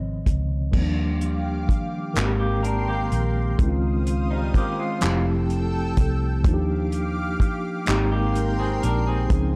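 Tender and sensual, this slow six-eight R&B excerpt opens with a mellow tine electric piano and a round, foam-muted fingered bass up front, joined at 0.3 seconds by a cloth-damped, thuddy drum kit with tight kick, dark cymbals, hi-hat, crash and handclaps. A lush, detuned unison pad with chorus and phaser settles in behind from 0.7 seconds, and at 2.4 seconds a slightly broken-up electric guitar through a small old amp adds a lo-fi second line with harmonic tremolo. The harmony drifts through rich major-ninth chords in a dark production with small-room ambience.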